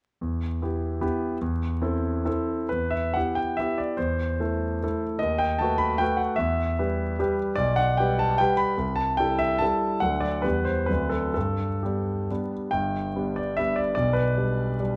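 A clear concert grand piano plays alone throughout this short excerpt of a romantic, classical triple-time dance in 3/4, its dotted rhythms shaped with a free, rubato feel at a tempo that moves between 124 and 161 BPM. The mood is nostalgic and wistful, opening in E minor and turning toward G major from 7.6 seconds. The piano sits up front and sounds intimate and polished, with deep bass, long sustain and audible action noise spanning a range from G1 to B5. The harmony moves from Em and Am/E through B7/D# and back to Em before brightening through G/B, Am7/C and D, settling on G by 11.4 seconds. A moderate recital hall reverb surrounds the playing, and a vinyl crackle lends the recording an aged, remembered quality.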